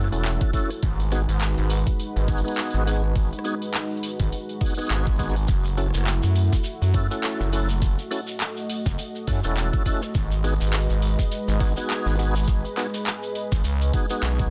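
Gritty and playful, this glitch hop excerpt at 103 BPM with a 16th-note swing rides a nasal, wave-folded synth bass up front over a moody, detuned analog pad pumping under sidechain, while overdriven organ stabs with slow rotary speaker, 12-bit sampler grit and digital delay sit over a dubstep kit of bright hats, handclaps and rim clicks, a knocking kick entering at 0.4 seconds, and a grainy shekere joining at 5.5 seconds, all cycling between F#m7 and G#m7 in a dense, heavily limited, dry mix.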